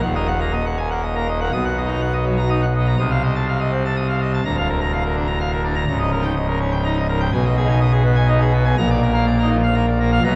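A full pipe organ opens on an E-flat minor chord, beginning a stormy, dramatic organ toccata in classical style that moves at 124 BPM in a straight 3/4. The organ plays alone throughout, its full registration with bright mixtures giving a majestic, brilliant sound in baroque voicing, with a crisp chiff on the attacks and the instrument placed up front. Its range spans from a deep Db1 up to D#6, and the harmony travels through Bmaj7, F7/C, Bb/D, Eb7/Db and Abm/Cb before arriving on Bb. A long cathedral reverb of about 4.2 seconds surrounds the sound, while a worn cassette tape character adds a warbling drift in pitch. The passage is cut from a longer piece, with a brief opening section giving way at 1.5 seconds to the main section that runs to 10.4 seconds.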